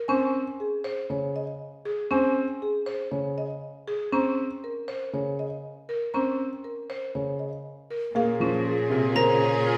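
Bright and propulsive, this excerpt of minimalist classical pattern music moves at 119 BPM in a straight 4/4, with a buzzing, airy marimba spinning arpeggios over a woody rosewood marimba melody and an intimate grand piano whose action noise is audible, until lush bowed strings enter at 8.1 seconds and a mellow alto flute with crisp attack and an expressive cello with portamento join at 8.2 seconds over Bbm9, a sharp plastic-mallet xylophone flickers in at 9.2 seconds, and the whole is set back in a stone room's reverb.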